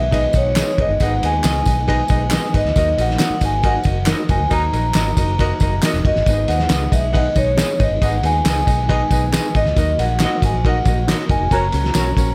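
A soft-mallet vibraphone carries the melody from the opening instant, its ringing tone trailed by slapback echo. Beneath it sit clear, short-sustained grand piano accompaniment, a round, foam-muted fingered electric bass, and sustained chords from a mellow tonewheel organ set in the background with fast rotary speaker and chorus vibrato. This driving, urgent slice of uptempo 1960s-style soul, cut from a longer piece, moves in a straight four. A cloth-damped, thuddy drum kit arrives almost at once, muffled and gritty, with a fat snare, tight kick and dark ride cymbal, placed up front beside tambourine and handclaps. From 0.6 seconds an electric guitar through a small old amp adds bright, twangy stabs shimmering with harmonic tremolo, while a light-vibrato saxophone section appears only in brief bursts at 4.5 and 11.5 seconds, landing on band accents as the harmony shifts to a new chord near the close. 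The sound is dry and close.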